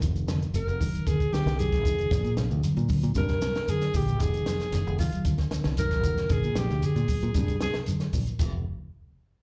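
A straight, funky afrobeat groove in four comes from a compact cocktail drum kit with a punchy kick, high-tuned snare, hi-hat and crash, joined by grainy shekere, very quiet, bright congas entering at 0.3 s, and an up-front fingered electric bass. Over a cycle of Fm7 and Bb chords, a dark, clean electric guitar plays arpeggios with phaser and slapback echo in the background, while a vintage alto saxophone takes an intense, vibrato-laden solo from 0.6 s, also touched with slapback echo. This short excerpt sounds like a live club gig heard through the venue's PA, and the chords drop out at 8.4 s.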